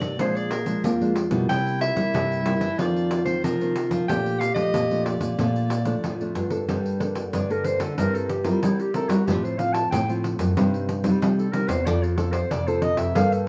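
A festive, playful samba-choro excerpt in Bb major at 93 BPM opens with a punchy, lightly vibrato soprano saxophone melody over fingerpicked, full-bodied nylon-string guitar chords, thumb-plucked nylon-string bass and a jingly, vintage-toned pandeiro in moderate studio reverb, joined at 0.2 seconds by a mellow, soft-attack clarinet that takes a roomy solo from 6.7 seconds after the saxophone drops out at 6.4 seconds.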